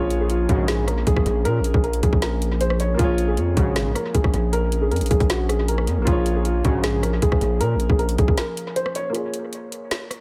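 Menacing and hard-hitting, this short cut from a longer trap piece sits at 156 BPM in a half-time feel in Bb minor, resting on a Bbm7 chord. A dark, mellow concert grand carries the melody through low-pass filtering and dub echo, while a felt-muted upright piano, soft and intimate with short sustain, plays accompaniment beneath it, also filtered and echoed, and continues until the end at 10.2 seconds. A sawtooth-and-triangle analog pad with a sub octave holds slow-attack chords in the background under chorus, and a very quiet, glossy pulse-wave polysynth adds retro stabs between 0.5 and 7.0 seconds. Up front, a distorted, saturated 808-style bass hits heavy with a noise layer, and the trap kit pairs a hard-clipped kick with a woody snare, metallic hats and rim clicks, its sound tape-tinged and touched by dub echo. The bass drops out at 8.4 seconds for a break, and a filter sweep over the closing section carries the echo-heavy, nearly reverb-free mix out.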